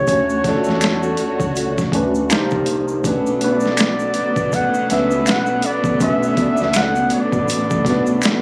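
Late-night and smooth, this 81 BPM neo-soul R&B excerpt in B minor swings over a gritty, pitched-down boom bap kit with a thumpy kick and high-tuned snare, as a breathy flugelhorn with scooped notes sings up front over a worn, slightly out-of-tune tine electric piano, a round, punchy dub bass, veiled muted strings, distant horn stabs and band-limited shaker and snaps, all moving through Dmaj7, Cm9 and Bm9 in a phone-recorded room with club reverb.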